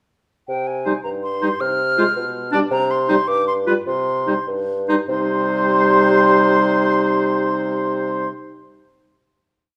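In a straight 6/8 at about 96-110 dotted-quarter beats per minute, this brief, stormy classical-period movement for wind quintet in C minor opens at 0.5 seconds with an airy, crisp-edged concert flute carrying the melody high above a mellow, up-front bassoon that plays bass on the beats along with sustained bass. From 0.9 seconds a clear, lightly vibrato oboe joins as a second line, with a soft-attacked clarinet and a warm French horn filling in the accompaniment, all three mixing short accented chords with sustained ones. The restless music slows from 2.2 seconds and closes on a held C minor chord from 5.1 seconds, with moderate recital hall reverb giving the ensemble a roomy sound.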